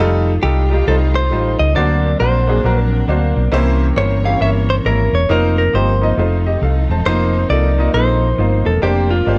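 Uptempo gospel with a swung, soulful and uplifting feel, this dark-toned fragment of a longer piece puts a round, punchy hollow-body electric bass up front beneath a brilliant, woody upright piano, while a compressed, scooped clean electric guitar carries the melody from 0.4 seconds, a soft, flute-like tonewheel organ with slow rotary vibrato holds very quiet chords and adds a fill at 2.6 seconds, and a lush, distant bowed string section sustains in the background, with light reverb on the mix as the harmony moves from F9 through C7b9 to Bb69/F.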